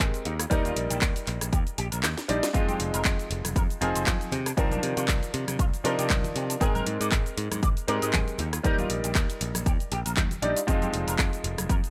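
Nu-disco with a groovy, sleek feel and a light swing on the sixteenths, this short cut from a longer piece runs through lush seventh and ninth chords such as Ebmaj7, Fm7 and Abmaj9. A baby grand piano sits up front as accompaniment, its natural, short-sustained tone pumping with sidechain compression and trailed by tape echo. A picked electric bass, bright and direct, holds the low end with the same sidechain pumping, while a clean, twangy guitar riff shaped by an envelope filter sits in the background under ensemble chorus and tape echo. The electronic kick is punchy and tape-warm, and the house kit adds a cracking snare, handclaps, hi-hat, rim click and shaker, both re-recorded in a small room and placed up front. The kick drops out from 2.0 to 2.5 seconds for a drum fill, and soft-handed congas join quietly in the background at 2.7 seconds, all set in light digital ambience.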